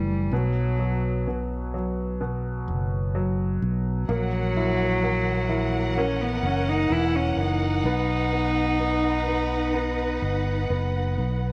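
Emotional and melancholic, this slow pop excerpt opens with a dark, reedy solo cello carrying the melody up front with a slapback echo, over a clear concert grand piano with long sustain and deep bass and a warm, direct fingered electric bass. At 4.1 seconds a bowed studio string section enters with sustained chords, its vibrato and portamento lending expressive color, and a moderate plate reverb gives the whole a spacious feel. The harmony moves from B5 through F#7/A# to B, and the cello falls silent at 10.7 seconds while the others carry on briefly.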